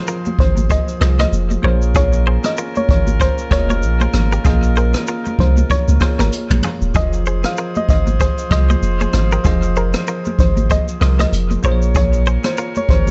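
Hypnotic and smooth, this afrobeats excerpt in F minor moves at 96 BPM with a swung sixteenth feel, drifting between Fm7 and Bbm7 under a studio reverb that leaves the whole mix echo-heavy and dulled at the top. Up front, a jazz brush kit with a boomy kick, hi-hat, rim click, shaker and toms sits beside a deep, punchy sub bass with a pitch-drop attack, while a faint electronic downlifter sweeps through the opening 1.9 seconds. A soft, round, filtered pluck carries the melody with chorus and dub echo, and dub echo also touches the bell-like tine electric piano, a twangy, compressed clean guitar riff tucked in the background, ringing high-tuned congas, and a mellow, distant horn section playing a tight second line.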